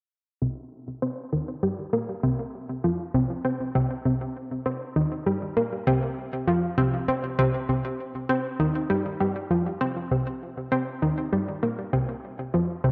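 A wet spring reverb and echo-heavy mix surround a lone analog pluck, round and bright with a sub octave and chorus and delay, sitting up front from 0.4 to 12.9 seconds in this mysterious, hypnotic ambient fragment in C minor at 99 BPM, moving into a new section at 10.1 seconds.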